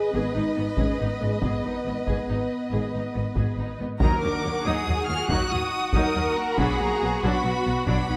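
A close, dry taiko ensemble struck with hard sticks drives this dramatic, epic orchestral film-score cue, entering at 0.8 seconds under a 12/8 pulse at 93 beats per minute in dotted quarters. Above it, a close chamber violin section carries the expressive, vibrato-laden melody high in its range, while a darker, more distant symphonic violin section sings a lush second line beneath. Mellow French horns hold sustained chords in a classical style, and a smooth, even viola section fills in the accompaniment. The low end rests on a warm cello section and a rich, distant double bass section, both bowed with vibrato. At 4.0 seconds the harmony moves from Ab minor to Eb minor, settling in Eb harmonic minor, and a brief timpani stroke sits in the background before a turn to B minor, all framed by a moderate scoring-stage reverb in this cut from a longer piece.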